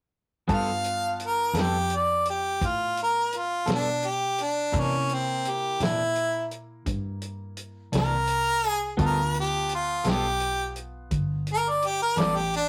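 A swaggering, rollicking slow blues in 12/8 begins at 0.5 s with the full band together, led by a harmonica solo that sits close-miked and up front. Its bright tone carries a light vibrato, soft attacks and scooped notes in a jazz style. In the background, a worn upright piano adds brilliant, woody accompaniment with audible action noise and a slightly detuned, intimate character. A clean, picked electric guitar accompanies through a harmonic tremolo until 12.4 s, while a dark, foam-muted fingered bass provides a round, amped low end. The dry, mid-forward soul drum kit offers a punchy kick, a medium-tuned snare, hi-hat and a rolled-off top, as the harmony moves from G9 to C9 and back to G9 in this rough rehearsal-room recording with tube saturation and moderate reverb, cut from a longer piece.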